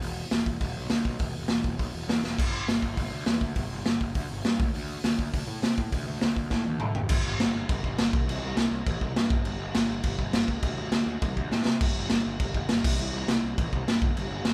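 A raw, live-in-one-room sound with light reverb frames this energetic, rowdy punk rock excerpt, driven at a brisk 204 BPM in a straight 4/4 in G major. The acoustic drum kit sits up front and dominates the balance, with a pumping small-room character, dark cymbals, a medium-tuned snare, a punchy kick and a gritty, saturated tone with a rolled-off top. Beneath it, the picked electric bass growls through fuzz and overdrive, bright and direct from the amp, moving between low E1 and D3. The drums break into fills around 2.2 s, again from 6.5 s and at 11.5 s, and the second fill carries the band into a new section for the rest of the cut. The whole thing feels loud-spirited and rough around the edges, like a garage band caught mid-song.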